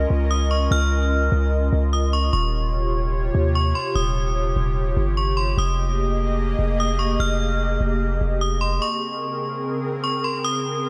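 A half-time feel in 4/4 gives this melancholic, spacious hip hop fragment, cut from a longer piece, a slow and unhurried sway. An airy, breathy pad holds sustained chords throughout, its detuned, nasal edge softened by chorus and a slow attack, moving through Db69, Eb13 and Fm11 before settling on Bbm9. Underneath, a deep, sine-like 808-style bass sounds long, mellow notes with a fast attack that decay, and it drops out at 8.8 s as the music shifts into a brief second section. Entering at 0.3 s, a metallic FM bell carries the high melody, its inharmonic, ringing tone warbling with a vintage character and a bright sheen, treated with chorus and delay. All three parts sit up front in a light reverb, leaving plenty of open space around the sparse arrangement.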